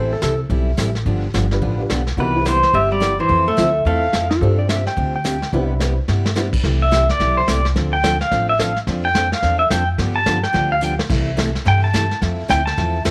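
A brisk swing on the eighth notes drives this cheerful western swing excerpt in C major at 215 BPM, anchored by a growly, thumpy upright bass up front and a vintage brush drum kit with a rolled-off top and a punchy kick. A bright dreadnought acoustic guitar, picked with audible finger squeak, and a detuned, jangly honky-tonk upright piano fill out the accompaniment, with the piano dropping away near 6.7 seconds. The twangy, compressed pedal steel carries the melody with slide and volume swells, first entering at 2.2 seconds alongside a hollow-body archtop guitar on a second line, then taking a solo from 6.6 seconds to the end. A dark lap steel, played with fingerpicks and slide, adds brief second-line phrases coloured by slapback echo. Drum fills land near 6.1 and 10.8 seconds, and light reverb lends the studio room a gentle sense of space over chords that move through sevenths, sixths and ninths.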